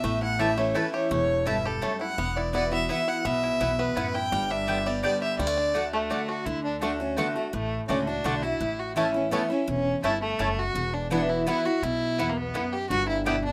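Bluegrass in a lively, virtuosic 3/4 at 168 BPM in D major, with a dark, woody fiddle up front carrying the melody alongside a twangy fingerpicked banjo, while a bright, full-bodied jumbo acoustic guitar accompanies, a round double-strung mandolin adds stabs from 0.4 seconds, and a growly, thumpy pizzicato upright bass anchors the low end, all in a rough home demo mix with light reverb, cut from a longer piece.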